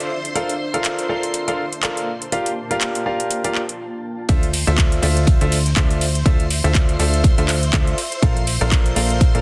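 Piano house with a soulful, bittersweet mood, cut from a longer piece and set to a swung groove. A clear, smooth concert grand carries the riff throughout, touched by tape echo and sidechain pumping, while shimmering, chorused string-machine violins hold sustained chords in the background and a cloudy, blurred granular pad adds a mellow, detuned haze with its own reverb. A house drum kit with metallic hats, handclaps and ride cymbal keeps time throughout; in the opening half the chords move from Bbmaj7 to Gm7, and a brief stop lands just before the drop at 4.3 seconds. There the punchy, up-front electronic kick arrives with a plucky, funky analog bass whose filtered sawtooth-and-pulse tone decays after each note, and a very quiet, dry acoustic soul kit adds dark, rolled-off hi-hat and snare underneath as the harmony opens onto Dm9 before returning to Bbmaj7. The mix is dense and heavily limited with little reverb, and the pumping pulls the piano, strings, pad and bass into a steady breathing motion.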